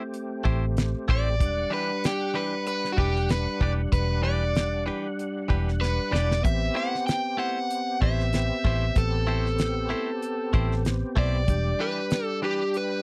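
A straight-eighth groove in 4/4 drives this brooding, mournful soul blues excerpt. A dry 70s drum kit with a fat snare and tight kick sits up front beside a round, foam-muted fingered bass, while a bright, twangy clean guitar adds picked stabs and a percussive tonewheel organ turning through a slow rotary speaker fills out chords moving between Am7 and Em7. A compressed overdriven guitar carries the melody from 1.1 seconds, and a drum fill lands at 5.8 seconds, all within a close, lightly reverberant 1970s-style studio sound.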